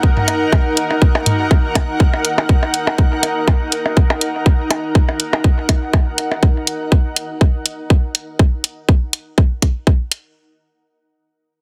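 A tight, up-front electronic kick drum and a granular cloud pad open this sparse, quirky minimal techno piece, cut from a longer track, at 122 BPM in 4/4 with a 16th-note swing in Eb minor, tuned to A4 = 443 Hz. The pad is blurred and evolving, a triangle-based unison tone with a slow attack and long release that drifts between Eb4 and Gb5, bathed in its own built-in reverb and pumping against the sidechain. Tape-warmed electronic toms and percussion blips, treated with tape echo, enter almost at once to scatter quirky accents, and bright, layered electronic hi-hats follow a moment later. At 6.4 seconds the pad and the blips fall away, leaving the kick and hats to carry the groove on a single Ebm chord until the kick stops at 10.0 seconds. The mix is dry and heavily compressed, with a squeezed, radio-like multiband sheen.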